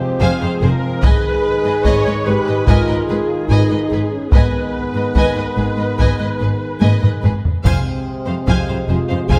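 This cut from a longer cinematic orchestral score opens with a close, focused viola section accompanying warm French horns and distant, roomy trombones that hold sustained chords on F minor at a steady 72 BPM in 4/4. Within moments the strings fill in: a lush, rich violin melody set in the background, a clear but distant second violin line, intense and full of vibrato, and a smooth cello bass doubled by a double bass section with a focused, smooth top. At 1.0 s the harmony moves to A-flat minor and a taiko ensemble enters, its hard-stick hits compressed and saturated, driving the heroic, relentless mood as the loudest part of the mix. A drum fill at 6.8 s leads back to F minor at 7.7 s, where a close triangle with a dark tone adds a faint glint. The whole passage sits in a moderate concert hall reverb that lends the soft-attack brass and bowed strings a sense of grand scale.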